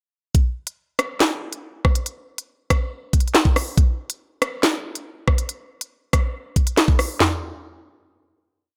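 A drill drum kit sits up front through this short, complete hip hop piece, its knocking kick and sharp snare layered with handclaps driving a half-time feel at 140 BPM in 4/4, while crisp hi-hats skip and break into fast rolls alongside rim clicks and toms. The electronic, produced sound carries a tense, menacing mood in a light reverb with digital ambience. The beat runs as a hook from 0.3 s to 7.2 s before a final hit closes the piece at 8.8 s.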